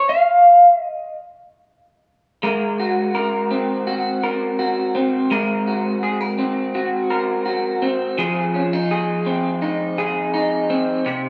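The recording has a dry, gritty hardware character, set in a moderate echo-chamber reverb that lends the sound a hazy depth. This short indie pop fragment, cut from a longer piece, carries a dreamy mood in a straight 4/4 feel. A single electric guitar through a small old amp carries the whole passage, picked, compressed and placed up front, with a warm, slightly broken-up edge colored by a lush chorus and vibrato. The opening 2.4 seconds are a clean guitar solo over unharmonized playing, before the part settles onto an Ab9 chord and then moves to Fm7 at 8.2 seconds. Ranging from C3 up to F5, the guitar keeps the focus on its shimmering tone across the full 11.3 seconds.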